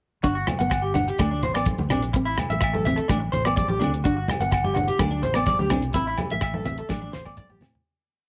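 Highlife guitar band groove in G major at 126 BPM, warm and carefree, running as a short complete piece of about eight seconds. An up-front electric guitar through a small old amp plays twangy, slightly broken-up sixteenth-note arpeggios, its lo-fi, compressed tone trailed by slapback echo. Beneath it a fingerpicked nylon-string guitar repeats a full-bodied classical ostinato, while a fingered electric bass adds a round, punchy, syncopated figure over the cycling Gmaj7, D7(no3) and Am chords. A damped 70s drum kit keeps a dry highlife beat with a fat snare, tight kick, hi-hat, rim clicks and toms, and agogo bells ring out a close bell time line from 0.5 seconds. Grainy maracas and thin-skinned, medium-tuned congas sit in the background of a small, lightly reverberant room, as the whole band fades out from 5.9 seconds under a closing drum fill at 6.9 seconds.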